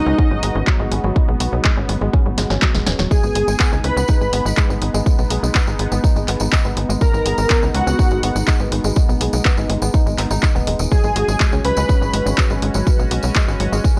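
Melodic techno at 123 BPM in G# minor, melancholic and dramatic, this short cut from a longer piece rides a punchy, up-front electronic kick and a house kit of handclaps, hi-hat and snare, with a drum fill at 2.4 seconds ushering in a close, jingly tambourine from 3.1 seconds. A tight, nasal sequencer bass with tube saturation drives beneath a thick, detuned unison lead carrying the melody through analog chorus, cassette tape and tape echo, shadowed an octave-range higher by a smooth supersaw second line. In the background a sweeping resonant pad sustains the chords and a woody, wave-folded pluck spins arpeggios, both pumping with the sidechain, over chords moving from F#sus2/G# to G#m and back, all captured in a dry, gritty hardware sound with a cassette tinge.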